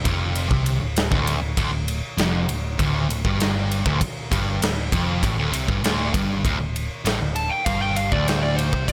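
A dry recording with little reverb carries this hypnotic, brooding stoner and doom metal excerpt in D minor at 98 BPM in a straight 4/4. A double-tracked, compressed fuzz guitar grinds out a low riff over a Dm chord, joined by a growly, amped picked electric bass and an up-front acoustic rock kit with a punchy kick, medium-tuned snare, ride and bright cymbals ringing in a big room. At 6.4 seconds the chord drops away for a solo section, and at 7.4 seconds a high fuzz lead guitar enters with a tape echo trailing its melody.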